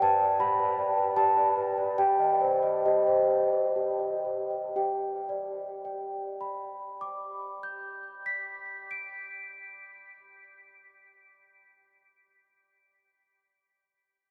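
In 3/4 with a straight feel, this classical lullaby moves between 58 and 80 BPM, easing and slowing through its opening 4.8 seconds. A large celesta plays alone from start to finish at 13.2 seconds, spanning G4 to D7 in G major, tuned to A4 = 439 Hz. Its bell-like, sweet tone is struck with soft felt hammers and sits up front, full and ringing, with a tape echo trailing each note. The harmony rests on G, shifts to C minor over G, and settles back on G as a new section opens at 4.8 seconds. A huge, wet ambient reverb places the instrument in a vast, echoing hall, giving this brief, innocent fragment of a longer piece a tender, dreamlike glow.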